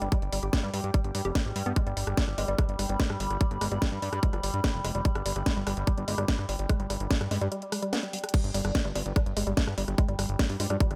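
A dry, close-sounding psychedelic trance excerpt at 146 BPM in G major, hypnotic and trippy, driven by a tight, up-front electronic kick and a garage kit with a cracking snare, hi-hat, rim clicks and crash, beneath a fat, detuned analog bass with a filter sweep. A woody, wave-folded pluck riff with chorus and digital delay pumps against a resonant, overtone-sweeping drone with phaser and a warbling, nostalgic lo-fi pad in the background, while a very quiet, nasal vowel-sweep wobble bass surfaces from 2.4 s. After a short break and drum fill, the drop arrives at 8.3 s on a rootless Fmadd9 chord, with the pad dropping away just after.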